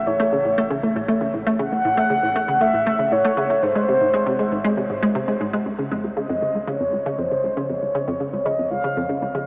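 A mellow, horn-like synth lead with vibrato and a deep, round sub bass open this cosmic, expansive fragment of sequencer-driven space music at 118 BPM, joined at 0.1 seconds by a juicy, squelchy resonant blip pluck riff with chorus and analog delay, before the sub bass drops away at 5.6 seconds and the harmony shifts from A major to Db major at 5.7 seconds, all bathed in a huge, wet reverb and the warbling pitch drift of worn old cassette tape played through a small speaker.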